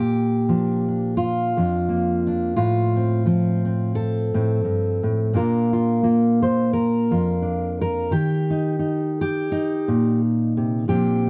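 A fingerpicked steel-string dreadnought guitar, dark and full-bodied with audible finger squeak, sits up front in this gentle, nostalgic solo folk excerpt at 87 BPM in 4/4 with a light swing, moving through Bb, F/A, Bb and Eb in a moderate studio room while worn cassette tape adds a warbly pitch drift, tuned slightly flat of standard at A4 = 438 Hz.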